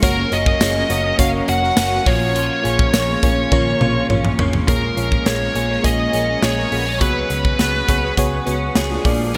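1980s-style pop at 103 BPM with a dramatic, urgent mood, where a dark, high-gain lead guitar carries the melody up front with distortion and digital delay over glassy, bell-like FM electric piano, a warbling, vintage brassy analog pad in the background, a slightly broken-up, compressed guitar riff with chorus and delay, very quiet fat sawtooth synth brass stabs that drop out between 2.0 and 5.7 seconds, a round, foam-muted picked bass, and a punchy, polished studio drum kit with gated reverb and a fill at 3.5 seconds, moving through Gb, Bbm and Db7sus4 in a lush hall with bright digital production.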